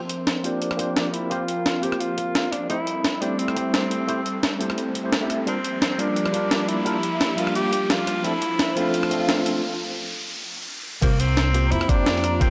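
A close-miked tenor saxophone sings a clear, vibrato-laden jazz melody through a filter sweep and digital delay over an airy, breathy pad and a background riser as this soulful, dreamy liquid drum and bass excerpt at 173 BPM builds, joined by a gritty, pitched-up breakbeat kit with a high-tuned snare, a worn, slightly out-of-tune tine electric piano and a knocking electronic kick, then after a break from 9.6 seconds a woody pizzicato upright bass arrives up front for the drop at 11.0 seconds, all bathed in a lush hall reverb with a dark production.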